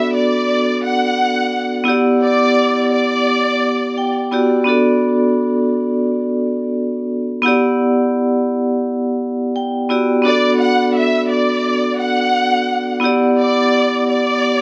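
Hip hop in E minor at 86 BPM with a light 16th-note swing, this dark, gritty fragment from a longer piece rides a slow sway between Bm7 and Em7. A metallic, ringing vibraphone struck with hard mallets carries the accompaniment throughout, its slow motor vibrato colored by cassette tape grain and a boxy small-room character. A lush, focused violin section states the melody from 0.0 to 4.1 seconds and returns at 10.3 seconds, bowed with vibrato and sounding somewhat distant under plate reverb.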